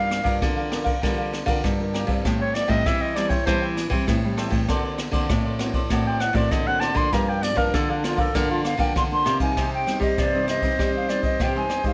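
A straight 4/4 samba-choro groove at 98 BPM in G minor is carried by a brushed jazz kit with a boomy kick, rim clicks and a dusky ride cymbal, while a bright, crisp cavaquinho, a woody nylon-string guitar with old strings, and a full-bodied fingerpicked nylon-string bass guitar with finger squeak fill out the accompaniment. A clear, classical-style clarinet solos over the Gm7–Am7–D7b13–Gm7 progression, and an airy, hollow concert flute with vibrato enters at 8.7 s to take the melody as the harmony moves to Cm at 9.6 s. The mood is yearning and nostalgic, set in a small, lightly reverberant room.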